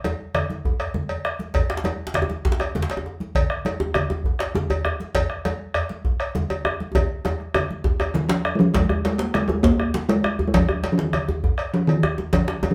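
Recorded live in one room with wet studio reverb, this driving, powerful West African drum ensemble excerpt rolls along in 12/8 at 134 BPM, as bright, thin-skinned congas, a metallic cowbell and a background djembe set the groove beneath a deep, dark bombo up front, a second cracking, hard-handed djembe joins at 1.7 seconds, and a resonant talking drum carries the melody from 8.1 seconds, ranging from Eb3 to Bb3 as a drum fill draws to a close.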